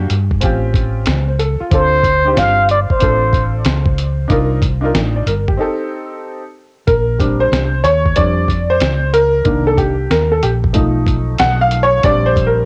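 A relaxed, cool jazz-hop groove in 4/4 at 93 BPM, swung on the sixteenths, sits in Bb major on a gritty, compressed sampler-style drum kit with a thumpy kick, fat snare and hi-hat, re-recorded in a small room and run through cassette tape. Underneath, a woody fretless electric bass with a dark, round, hollow-body tone holds the low end up front, while a clear upright piano, worn and slightly detuned, carries the harmony through altered and extended chords such as A7alt, Cm11 and B7#11, its sound also passed through cassette tape. A trumpet with a plunger mute enters briefly at 1.7 seconds for a breathy, wah-wah melody with vibrato and a smooth top, colored by tape echo, and drops out by 3.5 seconds. After a break from 5.6 to 6.9 seconds, the piano takes a solo through the second section, moving from Bb69 through Cm9 and B7#11 back to Bb69. Light reverb and the home-cassette recording give the whole cut a dusty, intimate character, and it ends as though lifted from a longer piece.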